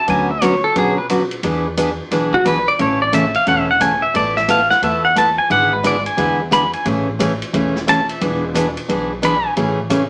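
A bright, twangy pedal steel guitar, played with fingerpicks, volume swells and slide, leads a swinging, down-home western swing country excerpt in A major at 177 BPM, up front beside a picked dreadnought acoustic guitar, with a woody, thumpy gut-string upright bass and a vintage drum kit of dark cymbals and a tight kick behind them in a wet studio reverb.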